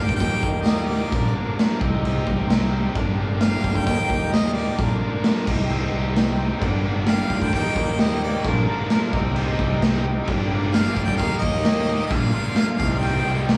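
A bright harmonica with light vibrato carries the melody over a brooding, swaggering classic rock groove at 131 BPM, cycling through Eb, Bb, Cm and Gm in this short cut from a longer piece. A biting overdriven guitar riff and a warm, overdriven picked bass drive beneath it, while a raw garage drum kit sits up front with a boomy kick, a pumping stone-room sound and a saturated, rolled-off top. A tight, distorted second guitar joins in the background at 6.6 seconds, and a very quiet tonewheel organ holds sustained chords through a slow rotary speaker, all in a live-room, cassette-tape ambience with a large, wet studio reverb.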